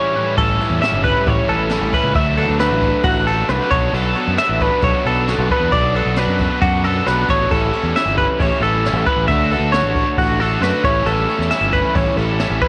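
A straight, even 4/4 pulse drives this bright, intricate slice of math rock and midwest emo, cut from a longer piece. An up-front twelve-string electric guitar rings out clean, twangy arpeggios high in its range, coloured by spring reverb, analog delay and cassette-tape grit, while a second, very quiet twelve-string adds clean, picked accompaniment only until 2.2 s. A double-tracked, overdriven stack guitar plays a riff beneath them, and at 0.4 s a growling fingered bass with its own overdrive joins alongside a brushed jazz kit whose dark cymbals, high-tuned snare and boomy kick sound natural and acoustic. The harmony moves through rich extended chords, from A9 to Dadd9 and Bm9, back to A9, then through Dmaj9 before returning to A9. The home cassette recording sounds dry, with a lo-fi tape character on the arpeggiated twelve-string, the stack guitar and the drums.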